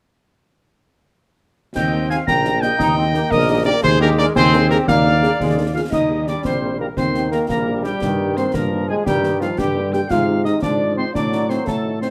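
A spirited, proud military-style march for wind band in 6/8 at 115 BPM in Eb major, cut from a longer piece, with a solo cornet carrying the melody over sustained trombone chords in the background, a quiet French horn section and a mellow, up-front tuba bass, while concert snare drum, clash cymbals with dark cymbal tone and concert bass drum drive from 1.8 seconds. A crisp, pure piccolo and a soft, distant woodwind section with light vibrato add second lines, and a solo euphonium joins them at 5.7 seconds as the harmony moves from Eb through Fm7/Ab to Adim7. Moderate studio reverb with a 0.8-second decay surrounds the band.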